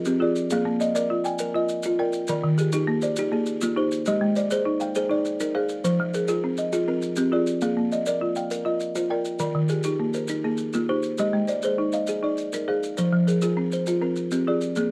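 A dark, lightly reverberant recording carries a rippling, warm southern African traditional piece built on an interlocking mbira-style cycle at 135 BPM in 12/8, with a bright, buzzing, thumbnail-plucked kalimba up front playing arpeggios over a dry, rustic folk marimba, its hardwood bars struck with medium hard mallets, while grainy, close maracas add a mellow texture to this Bb mixolydian fragment cut from a longer piece.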